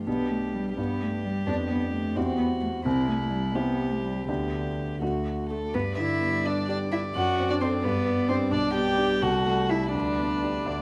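A rubato 6/8 lilt at 85 BPM in dotted quarters carries this spirited, lively classical-period movement for piano quintet in G major, cut from a longer piece, where a clear grand piano with audible action noise and a dark, woody cello played sul tasto with vibrato support a rich, floating violin melody that sounds distant, before a viola with an airy bow and light vibrato joins at 5.5 s and a second violin with a warm, smooth top adds its own line at 5.7 s, heard in a recital hall with moderate 1.5-second reverb through close, detailed microphones.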